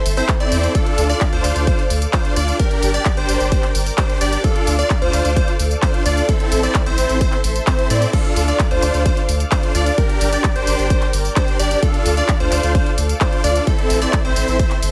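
Emotional and euphoric, this festival progressive house excerpt drives along at 130 BPM in a straight 4/4, cycling through D minor, G minor and A minor chords. A punchy, layered electronic kick sits up front from 0.3 seconds, alongside a big-room drum kit of crash cymbal, handclaps, hi-hat and tambourine that enters just before it. Underneath, a deep, thick saturated sub bass holds the low end with a sidechain pump. In the background, a lush supersaw pad with a slow attack sustains chords, colored by vintage 12-bit sampler grit and its own pumping. Over it, a huge, bright supersaw riff and a catchy, square-wave plucky lead share tape echo, the pluck adding phaser, lush chorus and a filter sweep to its glittering arpeggios. A light reverb and digital ambience frame the mix until the cut at 14.9 seconds.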